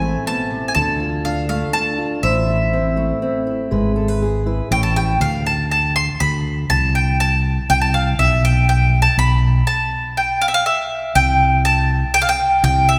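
A round, double-strung mandolin carries the yearning, stirring melody of this indie folk excerpt in three, over a punchy, dark fingered electric bass and a fingerpicked steel-string acoustic guitar that drops out at 5.2 seconds, all bathed in a lingering church reverb, with a break from 9.7 to 11.2 seconds before the building arrangement presses on.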